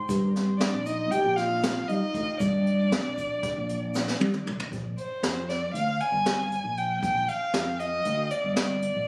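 Recorded on a phone in a studio room with moderate reverb and compression, this bright, intricate fragment of progressive instrumental band music moves in 9/8 at 234 BPM in Bb mixolydian, with a dark, woody, bowed violin carrying the melody through tape echo over an up-front fretless electric bass with ensemble chorus, a roomy brushed drum kit with a boomy kick and high-tuned snare that plays a fill from 3.9 to 4.7 seconds, a grainy, very quiet egg shaker, and an airy, hollow alto flute with tape echo playing a background second line until 4.2 seconds, while the harmony shifts from Ebmaj7 to Bb.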